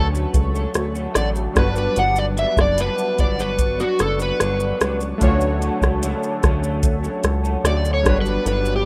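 An overdriven slide guitar carries the melody up front through this short, laid-back piece of bedroom-flavoured indie pop, its dark, fingered tone touched with subtle chorus and tape echo as it solos across the full 8.9 seconds. Beneath it, an electric guitar through a small old amp picks out a slightly broken-up accompaniment, shimmering with ensemble chorus and a vibrato effect. Analog keys sit in the background with a round, detuned sawtooth sound and a cassette-tape cast, while a swirling phased pad holds sustained chords high above. A glossy chorused synth bass and a soft vintage rhythm box, with its deep kick, metallic hats, rim click and shaker, both sit up front at an unhurried 74 BPM in straight 4/4. The harmony drifts between Dmaj7 and Gmaj7 in D major, and the dry, rough home-demo mix gives the whole thing a nostalgic feel.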